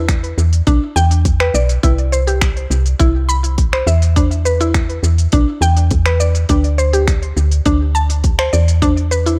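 A bright, mallet-like synth pluck plays arpeggios over a dark, round FM bass from the opening, the pluck colored by chorus, cassette-tape grit and tape echo, while a tight electronic kick and a produced electronic kit of finger snaps, smooth hi-hat and shaker join at 0.1 seconds. This hypnotic, earthy organic downtempo cut, taken from a longer piece, moves steadily in four through a cycle of E7(no3), C and Dsus4. The mix is dry and close yet echo-heavy, with the pluck and bass sitting up front.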